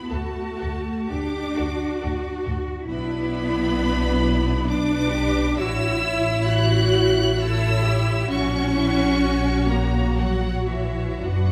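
A violin section, a viola section and a cello section open this slow, melancholic string orchestra passage in 3/4 together, with the violins carrying the high melody over the violas' accompaniment and the cellos' bass line. A second violin line and the double basses join at 0.1 seconds. The feel is solemn and rubato, with the harmony moving from D to Bm, then A, and finally F#/A# at 8.3 seconds. The bowed violas sound lush and focused, the distant violins sing with vibrato, and the cellos are even and close. The double basses sit up front with a rich, smooth top, giving the ensemble its weight, while a wet scoring stage reverb sets the whole from further back until the fragment breaks off at 11.5 seconds.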